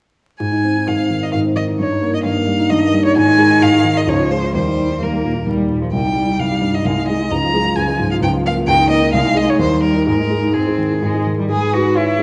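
In a quick, straight 3/4 at 130 BPM, this cheerful, graceful classical-period movement for piano trio in A-flat major opens at 0.4 s, with a focused, up-front violin singing the bowed melody with vibrato over a dark, mellow baby grand piano accompaniment. From 0.9 s a rich, smooth cello adds a distant, even second line with vibrato, while the harmony moves through Ab, Eb, Db, Cm and Bbm before arriving on G#m at 11.5 s. A wet recital hall reverb and a layer of vinyl crackle frame this passage, which is cut from a longer piece.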